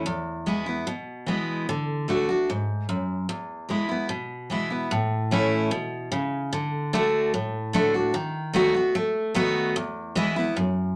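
Set in a straight 4/4 at 149 BPM, this short country excerpt in A major moves with a steady pulse and a heartfelt, down-home mood. A picked steel-string acoustic guitar plays alone throughout, its dreadnought tone bright and full-bodied, sitting up front in the mix. The first section turns from E to D and back to E, and at 4.9 seconds a second section opens on A, passing through D and B7/D# before settling on E near 9.8 seconds. The guitar spans the low E string up to F#4, giving the plain progression a rooted, generous sound. A short, wet small-room reverb wraps the instrument in a close, intimate space, and the passage is cut from a longer piece, ending at 10.9 seconds.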